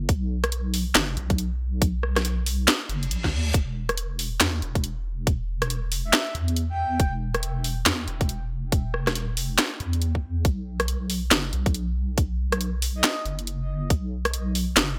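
A half-time 139 BPM groove with swung sixteenths drives this brooding, cavernous deep dubstep excerpt, built on a tight, up-front electronic kick and a garage kit of cracking snare, warm hi-hats, handclaps and rim clicks. Underneath sits a deep, saturated wobble bass with a dark, detuned chorus sheen, and an electronic reverse cymbal sweeps in at 2.9 seconds. A breathy, flute-like synth lead with gentle vibrato and dub echo floats in briefly at 6.0 and again at 13.0 seconds, all within a bright, 1980s-style digital ambience.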